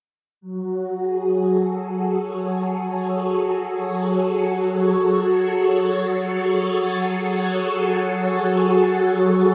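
Ambient in free time and F# minor, this expansive, mysterious excerpt rests on a single F#madd9 chord sustained from 0.5 to 9.5 seconds by an up-front phased string machine, its swirling, bright sawtooth tone shaped by ensemble chorus, phaser and a slow attack, and bathed in the wet reverb of a concert hall within a dark production.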